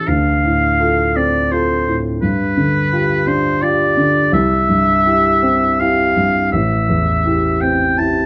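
In a flexible, rubato three-beat lilt, this lyrical and serene romantic classical duo sets a roomy oboe melody with light vibrato over dark, mellow grand piano accompaniment, both playing throughout the 8.3-second fragment as the harmony moves from Dm7 through G7 and C to Am7 under light reverb.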